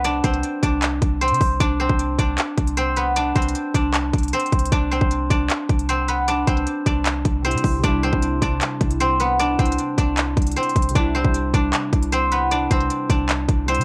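A lightly reverberant home cassette recording carries this dreamy, triumphant trap excerpt in C major at 154 BPM with a half-time feel, opening on a break that runs to 6.3 seconds. Up front, a bright, silvery guzheng played with fingerpicks rings out the melody through tape echo, beside an electronic trap kit of hard-clipped kick, crisp hi-hats and handclaps, while a clean, boomy 808-style bass supplies deep, dark sine tones. The harmony moves from Csus2 to C at 4.7 seconds, and at 7.4 seconds glassy, detuned digital keys with chorus and a filter sweep enter quietly in the background as accompaniment.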